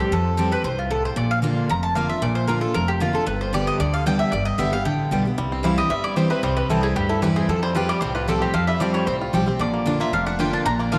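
A brisk, straight four-beat pulse drives this joyful, lively bluegrass excerpt, cut from a longer piece. Up front, a round, double-stringed mandolin carries the melody while a bright, full-bodied jumbo acoustic guitar picks the accompaniment beneath it. An upright bass with gut strings adds a woody, thumpy pizzicato low end from the start. At 5.4 s a twangy, percussive banjo played with fingerpicks joins the melody, its notes touched by tape echo. The harmony moves through Fadd9, Bb, G and C, and a moderate plate reverb gives the acoustic ensemble a roomy sheen.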